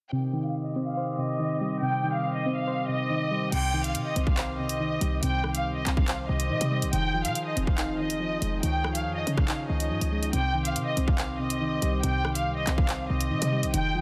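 Tense and menacing, this half-time drill excerpt opens with a filter sweep over a lush, bowed violin section carrying the melody, soft and round electric-piano-like synth keys with a warbling chorus, and a reedy, nasal harmonium holding sustained chords. The strings sound expressive and distant, with vibrato and portamento, while the keys add a dark, vintage tone beneath them. At 3.5 seconds the drums and bass arrive together: an electronic drill kit with a hard-clipped kick, bright hi-hats, handclaps, rim clicks, crash cymbal and a soft-clipped snare, sitting up front, and a short, punchy 808-style bass with a tight sine body and a noise layer. The harmony moves from Cm through Fm7 and Dbadd9 before returning to Cm. Light reverb surrounds a dense, heavily limited modern master, and the clip is cut from a longer piece.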